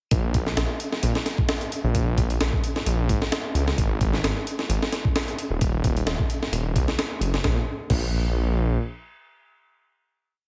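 A looped, edited breakbeat with lightly swung sixteenths drives this short, energetic and swaggering breakbeat piece, its pitched-up, gritty sampler-style kit pairing a thumpy kick and high-tuned snare with hi-hat and crash, captured in a large room and sitting up front. Beneath it a menacing detuned saw bass rumbles through a dub-style line, thick and beating with a saturated edge and a sine underpinning. The whole piece is one drop until 7.4 seconds, after which the drums stop at 8.0 seconds and the bass rings out to 8.8 seconds, all dry and squeezed into a heavily compressed, radio-like sound.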